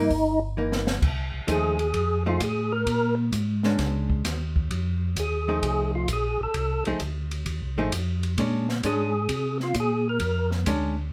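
Soul jazz organ trio at 131 BPM with a swung, bluesy and soulful feel, cut from a longer piece. A fat, lightly overdriven tonewheel organ with key click and third harmonic percussion carries the melody and takes a solo from 1.0 seconds, while a second, round and clean organ with chorus vibrato and slow rotary speaker plays the bass under a dark, hollow-body archtop guitar comping through dominant sharp-nine chords. An open acoustic drum kit with dark cymbals, a high-tuned snare and a boomy kick plays a fill just before the solo, all set in moderate studio ambience.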